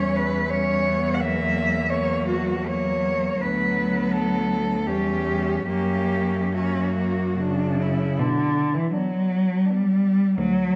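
Dark, warm production places four bowed cellos on a scoring stage with a moderate reverb tail, in an excerpt cut from a longer classical piece for cello ensemble. It is melancholic and elegiac, in B minor and 3/4, moving with a rubato pulse between 70 and 86 BPM. The melody cello sings from D4 to F#5 with a warm, expressive tone, vibrato and portamento, sounding at once distant and up front. Beneath it a second cello carries a rich, focused line with vibrato, while an accompanying cello adds expressive vibrato and portamento in the range C#3 to A#3. A clear, smooth and even bass cello anchors the harmony from D2 to B2, which passes through diminished and dominant colours before settling on B minor at 8.2 s. The two upper cellos stop at 10.2 s, leaving the accompaniment and bass to sound until 10.8 s.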